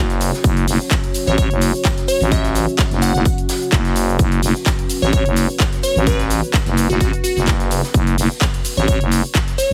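Swaggering and aggressive, this bass house cut runs at 128 BPM in F# minor with a light 16th-note swing, built on a growling, thick FM bass with tube saturation and sidechain pumping, plus a punchy, tape-warm electronic kick that sits up front from 0.4 seconds. An overdriven house kit adds bright hats, handclaps and shaker, while a very quiet vintage kit with a rolled-off top brings a small-room snare, hi-hat and shaker, and a dark, detuned analog pad holds sustained chords in the background with chorus and its own pumping. From 1.3 seconds a glassy, crystalline wavetable pluck carries the melody with chorus and tape echo, all framed by a heavily compressed, radio-like sound.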